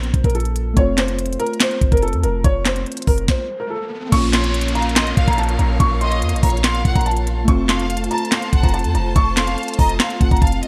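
A dark, melancholic trap beat in Bb harmonic minor opens at 143 BPM with a half-time feel. A mellow, boxy baby grand piano carries the melody, its action noise audible and its tone thickened with lush chorus and delay. Beneath it sit detuned, warbling lo-fi synth keys with a nostalgic haze, a deep, boomy 808-style bass, and an up-front trap kit of knocking kick, sharp snare, crisp hats, handclaps and crash cymbal, treated with gated reverb. At 3.3 seconds a stop arrives with an electronic riser and downlifter. At 4.1 seconds a symphonic string section enters with soft-attack sustained chords full of vibrato, joined moments later by a biting, intense violin section playing a second line through delay. The harmony moves between Bbm and F in a bright, dry, 1980s-style digital mix, and the clip is cut from a longer piece.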